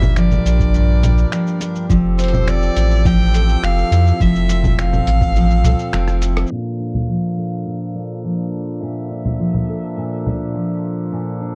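A dry, close, 1970s-style studio sound with a low-pass haze frames this hopeful, pastoral folktronica excerpt in Bb lydian at 104 BPM, moving from Gm7 through Fmaj7 to Bbmaj7. Up front, a brilliant, full-bodied picked dreadnought guitar plays arpeggios over a deep, round sine sub bass, while a reedy, breathing harmonium holds sustained chords and a single bowed violin carries the melody with vibrato, its focused tone roughened by 12-bit sampler grit and tape echo. Muffled, pitched-down sampler drums with cabasa, congas, finger snaps, hi-hat and rim click sit alongside a thumpy background kick that stops at 5.3 s, a drum fill arrives at 5.9 s, and the sub bass drops out at 6.4 s.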